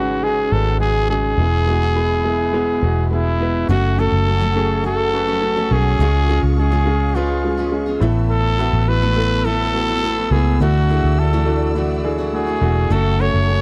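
A raspy, growling trumpet carries the melody up front in this driving, earnest piano-driven pop excerpt in F# minor at 104 BPM, over a woody upright piano with audible action noise, a round, punchy foam-muted electric bass and a background string section with vibrato and portamento, while a picked dreadnought acoustic guitar riff joins at 3.7 s, all captured in a dry, close 1970s-style studio sound.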